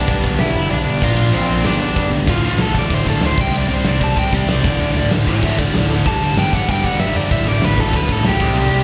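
Punk rock at 191 BPM in 4/4, rebellious and upbeat, taken from a longer piece and captured as a live gig through the venue's PA, with a recital-hall reverb around a mostly dry mix. The opening 2.3 seconds sit in half time over G/B, Bb and G, and a drum fill from 2.0 to 2.3 seconds launches the second section, where the chords move through D5, C5 and G5. An overdriven electric guitar carries the melody from C4 to A5 with a compressed edge and slapback echo, stepping into a solo from 2.3 seconds to the end. Beneath it, an up-front overdriven semi-hollow guitar with a hollow-body glow and a bright, distorted guitar set back in the mix both pick riffs from D2 to Bb4, each with slapback echo. A growly, punchy overdriven picked bass drives the low end from D1 to G2, while a big rock drum kit with a fat snare, a punchy kick, crash cymbal and toms sounds dark and smooth, its top rolled off in a big room.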